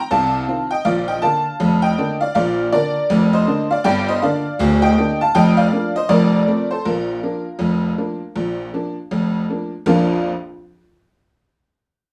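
A solo tack piano opens this short ragtime piano excerpt, its metallic, jangly tone sitting up front from the very first second. The mood is playful and cheerful, moving at 80 BPM in 2/4 with a swung sixteenth-note feel in Bb major. The piano spans a broad range from D1 up to Bb5, and its percussive, vintage character gives the playing a boxy, old-fashioned bite. The harmony starts on an F7 chord before settling into Bb, later passing through Gm, Bb/F and F before returning to Bb at 6.9 seconds. A small room reverb adds a close ambience around the instrument, and the piano stops at 10.3 seconds, shortly after a new section begins at 9.9 seconds.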